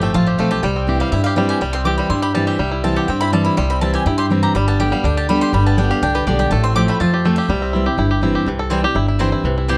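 Virtuosic and lively, this bluegrass excerpt races along at 245 BPM in a straight 4/4, set in C major and cut from a longer piece. A picked steel-string acoustic guitar sits up front with a dark, full-bodied dreadnought tone and old strings, carrying the accompaniment, while an upright bass plucks a growly, thumpy low line beneath it. The bluegrass banjo, also up front, carries the melody with twangy, percussive fingerpicked notes touched by a slapback echo. The mandolin adds woody double-string stabs and takes a solo from 0.0 to 8.5 seconds, after which the banjo steps forward for its own solo until 9.8 seconds. The harmony moves from F to C, then G, F/A and back to C, and close, detailed microphones with light reverb keep the picking crisp and present.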